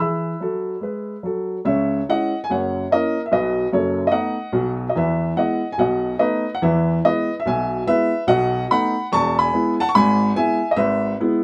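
A swinging 4/4 pulse at 145 BPM drives this short stride piano passage, with a 64% swing on the eighth notes that gives it an exuberant, buoyant lift. A lone upright piano carries the whole performance, ranging from deep bass down at E1 up to bright treble at E6, and its tone comes across as warm, woody and open, sitting up front in the mix. The harmony stays rooted in E major, opening on the home chord before moving through C#m, F#7 and B7 from around 1.6 seconds. From there it keeps circling between E and B7 in cheerful turnarounds. A brief opening phrase gives way to a longer second passage that runs to 11.4 seconds, ending on E/G#, the tonic chord with G# in the bass, as this cut from a longer piece breaks off. A moderate studio ambience with a short reverberant tail keeps the sound lively and close.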